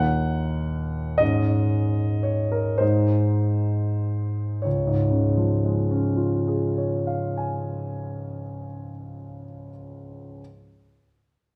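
A warm concert grand piano opens this brief excerpt from a romantic nocturne, playing alone in D-flat major with a serene, tender mood. The pulse moves slowly in 6/8, at roughly 31 to 43 beats per minute counted in dotted quarters, and the playing is freely rubato, slowing down through the first 4.6 seconds. Harmonies pass from E-flat minor through A-flat to settle on D-flat at 4.6 seconds, where a second section begins. The piano spans from a deep, resonant bass up into its upper middle register, with an open tone and long sustain placed close to the listener. A wet recital-hall reverb with a 1.4-second decay surrounds the instrument, lending the short fragment a spacious, intimate glow.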